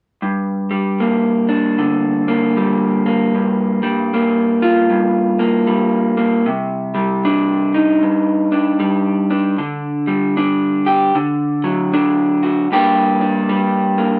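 An electric guitar played through a small old amp carries this short folk fragment alone, its tone dark and slightly broken-up, with a lo-fi grain and a picked attack that sits up front. The mood is wistful and reflective, moving at 77 BPM in 4/4 with a swung eighth-note feel in G minor. The guitar covers the span from G2 to G4, working through Gm, Gm7 and Cmadd9 before reaching Dsus4 and D, then settling back onto Gm at 12.7 seconds as a brief new section begins. Light reverb gives the sound a little air around it. The passage is cut from a longer piece, ending at 14.2 seconds.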